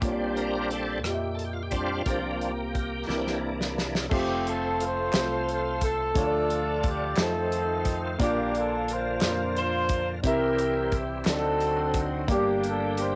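A home cassette recording with light reverb carries this uplifting, soulful slow gospel excerpt in 6/8. A bright, shouting tonewheel organ with slow rotary speaker, chorus vibrato and key click leads the opening, backed by a concert grand piano with deep bass, a round, punchy fingered electric bass and an up-front soul drum kit with a fat snare and dark cymbals, until a drum fill leads into the horn section's melody at 4.1 s. The mellow, distant horns play as an ensemble with light vibrato, and very quiet, crisp group handclaps join from 5.1 to 11.6 s.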